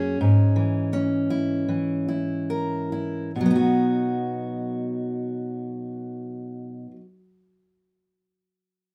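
A fingerpicked steel-string acoustic guitar carries this short folk passage alone, its bright, full-bodied dreadnought tone sitting up front from 0.0 to 7.1 seconds. The mood is peaceful and nostalgic, in B major and 4/4, with a rubato feel that drifts between 68 and 88 BPM. The opening phrase slows down through its first 3.3 seconds over an E6/G# chord, and the music then settles onto B as a new section begins at 3.3 seconds. The guitar ranges from F#2 up to A#4, and a small, wet room ambience gives the playing a gentle halo. The sound is that of a rough home demo, and the passage is cut from a longer piece.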